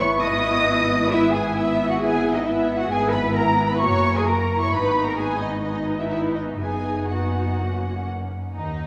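A muted string orchestra opens together at once, with violins carrying the melody and a second violin line, violas in accompaniment, and cellos and double basses on the bass, all playing con sordino through the whole short fragment. This is a quick, lively and spirited classical-period movement in 4/4, shaped with a flexible rubato feel. The melody violins sit veiled in the background with a smooth top, while the second violins sound lush and the violas stand up front with light vibrato. Beneath them, the cellos are close and full, and the double basses add a dark, smooth-topped foundation. A vast cathedral reverb wraps the ensemble in a long, echoing wash as the harmony moves from E/G# through G#madd9 and G#m to close on F#.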